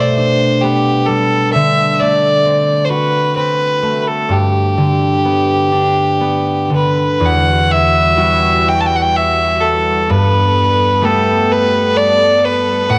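This home cassette recording has a light reverb and catches a wistful, tender Celtic slow air in G major, cut from a longer piece. It moves in a rubato 3/4 at about 63 BPM, with uneven beats. Up front, a single bowed fiddle carries the melody with a clear, smooth top, an earthy grain and light vibrato. Beside it, a fingerpicked concert harp rings out an acoustic, warm accompaniment colored by a cassette tape texture. At 7.2 seconds, a rich chamber string section joins in the background with close, bowed sustained chords, also touched by light vibrato and the same tape character. The harmony drifts from Gadd9/B through D7 to G, then turns to Emadd9 before settling on Gadd9.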